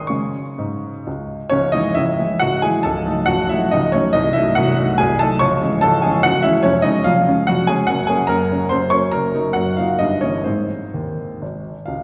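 Bathed in a lush concert-hall reverb and heard from deep in the room, this graceful, rustic romantic-era classical dance in triple time features a worn, present baby grand piano alone, its dotted rhythms bending with rubato as the harmony moves from C-sharp minor at about 1.5 seconds through diminished chords before settling on an A-flat major chord near 10.5 seconds.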